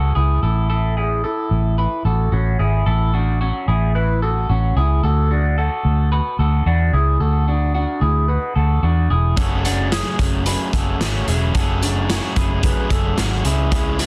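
A straight 4/4 pulse carries this bright, youthful stretch of jangly indie pop, cut from a longer piece. From the start, an electric guitar through a small old amp plays picked arpeggios in a lo-fi, slightly broken-up, compressed tone coloured by phaser and delay. Beneath it, a vintage muted fingered electric bass sits up front, dark and round with a foam-muted, amped body. At 9.4 seconds a raw garage drum kit enters with punchy kick, medium-tuned snare and hi-hat, its gritty, saturated sound pumping in a small room with a rolled-off top. A crunchy overdriven guitar joins at the same moment as accompaniment, while the harmony moves from A to F#madd9 and reaches C#m near the end. Light reverb gives a small-room ambience, and the whole piece is pressed into a dense, heavily limited modern master.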